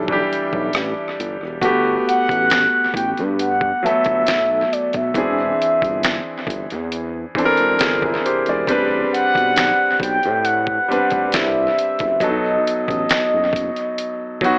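A lightly swung 16th-note feel at 68 BPM in 4/4 anchors this smooth, soulful neo-soul and R&B piece in E minor, cut from a longer work. A dusty, sampler-style drum kit enters at 0.1 seconds, its compressed, gritty sound built from a thumpy kick, fat snare, rim click, hi-hat and finger snaps, sitting up front with an analog delay. Beneath it, a gliding synth bass blends sawtooth and square tones into a detuned, sustained line with portamento, running from 0.0 to 14.5 seconds. An intimate grand piano carries the accompaniment with audible action noise and its own analog delay, moving through Em7, Gmaj9, E7alt, Am11 and B7. On top, a round, horn-like synth lead sings the melody between D5 and G5 with a soft attack, vibrato, chorus and phaser. The whole mix has light reverb and a heavy wash of echo, with the narrow tone of an AM radio.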